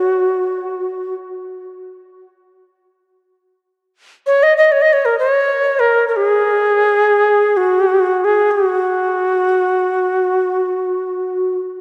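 A bright, pure Native American-style cedar flute plays solo from 0.0 to 11.6 s, up front with a crisp, chiffy attack, vibrato and delay, drifting in free time through F# major pentatonic in this calm, spacious world meditation excerpt, set in a wet church reverb within a dark, warm production.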